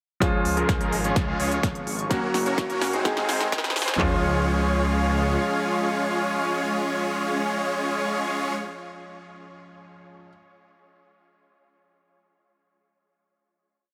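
Lightly reverberant and a touch thinned by a high-pass filter, this short, triumphant festival progressive house piece in Db major at 127 BPM surges through an anthemic build before settling on a final chord at 4.0 seconds. Huge, bright supersaw chords play a rhythmic riff up front, drenched in lush chorus and delay with a low-pass filter sweep and sidechain pumping, while a grand piano adds polished held chords with syncopated pushes through delay. Beneath them, a thick, menacing detuned saw bass drives steady eighth notes, and a slow-attack unison pad with chorus swells in the background from 1.5 seconds. A big-room dance drum kit punches out an overdriven four-on-the-floor kick with claps and floor toms, alongside a crisp, high-passed hi-hat and snare backbeat, all building through a drum fill as a very quiet riser effect sits underneath. The chords move from Db through Gb and Ab before resolving home, where piano, pad and supersaws ring out over the held ending.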